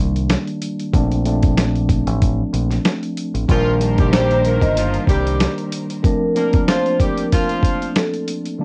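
Boom-bap hip-hop at 94 BPM in Bb major, confident and nostalgic, with a lightly swung groove where gritty, compressed sampler-style drums with a thumpy kick sit up front beside a dark, round fingered electric bass that drops out at 5.5 s, while a clean tine electric piano moves between Cm7 and Bbmaj7 chords. At 3.5 s, a mellow vibraphone melody with soft mallets and slow motor vibrato enters alongside punchy horn stabs carrying tape echo and a lush bowed string section sustaining chords in the background. The piece has a homemade cassette character, with filtered, band-limited upper parts and a short booth ambience, and it is cut from a longer piece.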